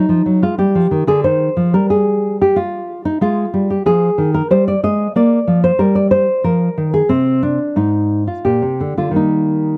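In a rubato 3/4 pulse drifting between 83-94 BPM, this short fragment of a baroque-style classical dance unfolds on a solo nylon-string guitar, introspective and solemn in mood. The guitar sits up front with a dark, full-bodied, thumb-plucked tone, ranging from Ab2 to Eb5 as the harmony moves from Fm7 through Eb69 and Ab5 to a chordless passage at 7.1 seconds before settling on Bb and Eb. The sound is dry and close, in the manner of a 1970s studio recording.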